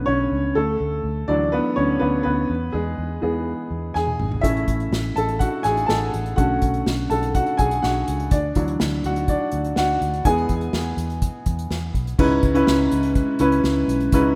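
A roughly mixed home demo bathed in lush hall reverb opens this uplifting, anthemic piano-driven pop excerpt at 124 BPM, where a clear, woody upright piano leads over a round, foam-muted vintage electric bass through Bm7, Dadd9, E and A chords, an airy unplugged drum kit played with bundle sticks arrives with a fill at 4.0 seconds, and a very quiet, ethereal glass harmonica adds sustained glassy chords from 12.2 seconds as the harmony moves to C#m7.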